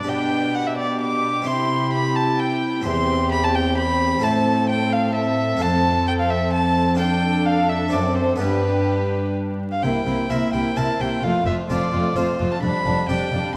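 A brisk, straight triple metre at 130 BPM drives this bright, festive baroque-style concerto movement, heard as a short cut from a longer piece and settling into C major from 4.2 s. Up front, a solo violin with an airy bow and a nasal, gut-string edge carries the melody, while a rich, smooth-topped chamber violin section plays the melody very quietly in the same register. A second violin section supplies a close inner line, while a dark, distant viola section and a brilliant, Italian-style harpsichord with octave strings fill in the accompaniment. A cello section holds the bass from the start, joined by a bowed double bass section at 9.8 s as the opening material returns. The harmony moves through A minor, F and a D7 toward G before turning to C7 and F, all bathed in a concert-hall reverb with vinyl crackle beneath.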